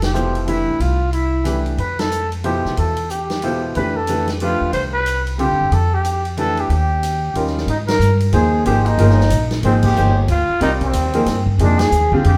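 Modal jazz in a brisk 3/4 at 184 BPM, swung and open with a spiritual air, moving from F lydian to Ab lydian at 7.7 s, with band accents punctuating the phrases. A raspy, growling trumpet carries the melody up front with vibrato and scooped notes under plate reverb, while a woody, thumpy pizzicato upright bass anchors the low end and a clear, vintage-toned upright piano supplies the harmony. A swinging big-band drum kit with punchy kick, snare, hi-hat, ride and crash sits lower in the mix, and the whole band is heard in a reverberant studio room in this cut from a longer piece.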